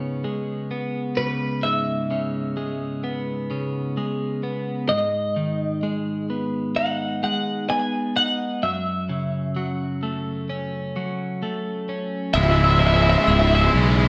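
Moving at a slow, straight 64 BPM in 4/4, this brooding, cinematic rock excerpt in C# minor opens on two up-front, compressed twelve-string electric guitars. One carries the melody with a clean, warm tone dressed in lush chorus and slapback echo, and the other plays low arpeggios, bright and twangy, with slapback echo of its own. The harmony moves from C#m7 to G#m and then F#m7 before settling on C#m at 12.4 seconds, where a build-up begins. At 12.3 seconds a double-tracked, crunchy overdriven guitar enters with a riff, joined by a growly, up-front fuzz bass, a very quiet glockenspiel ringing a sparkling E6 arpeggio with hard plastic mallets, and a very quiet, focused studio string section sustaining bowed chords with vibrato. The whole is set in a wet recital hall reverb that gives the guitars and strings a spacious, cinematic depth as the passage is cut off at 14.1 seconds.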